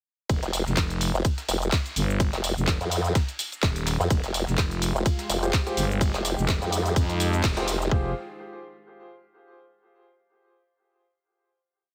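A growling, thick FM bass and a formant-sweep wobble bass drive this gritty, aggressive bass house piece, both up front with tube saturation and sidechain pumping, the wobble bass answering the other with modulated phrases of changing wobble speed. A tight four-on-the-floor electronic kick anchors a layered garage kit of shaker, claps, ride and hats, with a very quiet, sampler-style breakbeat loop with a high-tuned snare beneath and a band accent at 7.4 s. A moody, detuned analog pad enters at 4.7 s in the background, and a warm concert grand adds sparse echoing chord stabs from 5.4 s, the mix carrying a heavily compressed radio sound before a final chord closes the whole piece.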